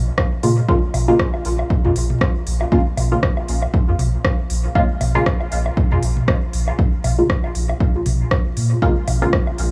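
Meditative and nocturnal, this short dub techno cut from a longer piece moves at 118 BPM with a gentle swing on the sixteenths. A deep, round sub bass sits up front from the very start, its soft triangle and square tones sustained and pumping against the sidechain. A punchy electronic kick arrives at 0.2 seconds alongside a deep house kit of smooth hi-hats and rim clicks that trail off into dub echo. Muted, detuned chord stabs built from sawtooth and square waves snap in with a filtered pluck and short decay, colored by phaser, echo and pumping. Electronic toms and woodblock with a tape-warm analog character join at 0.9 seconds, also echoing and breathing with the sidechain, while vinyl crackle and small room ambience under light reverb lend the whole a dusty late-night air.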